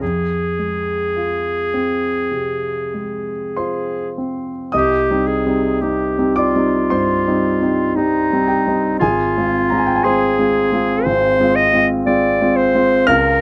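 Romantic classical duo for clarinet and concert grand piano, unfolding in a yearning, solemn mood at a slow, rubato pace of roughly 46-60 BPM, moving from F minor into C minor at 4.7 seconds. The bright clarinet carries the solo melody up front, while the piano's warm, natural accompaniment reaches down into deep bass beneath it, and both sit equally close. The sound is dry and intimate, captured with detailed close microphones, in a passage cut from a longer piece.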